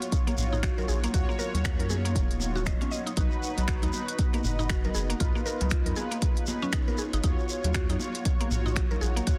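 The up-front electronic kick drum, deep and tape-warm, anchors this hypnotic, spiritual afro house excerpt at 118 BPM in Eb minor, swung on the sixteenths and cut from a longer piece. A round, nasal analog bass enters at 0.4 seconds with sidechain pumping, while an afro-pop drum kit of finger snaps, crisp hats and toms, with soft clipping on the snare, runs alongside a grainy, close and dry shekere and bright, high-tuned congas with hard hands sitting in the background. A woody, mallet-like FM pluck plays arpeggios through chorus, cassette tape coloring and digital delay, and a brassy, detuned synth brass part adds stabs with chorus, phaser, vibrato and a filter sweep. Beneath them, an ethereal, airy pad holds sustained chords in the background, its slow attack and long release shaped by ensemble chorus, built-in reverb, tremolo and sidechain pumping. The harmony moves from Ebm7 to B at 3.2 seconds, then Db7 at 5.2 seconds before returning to Ebm7, all within a dense, heavily limited modern master with light digital ambience.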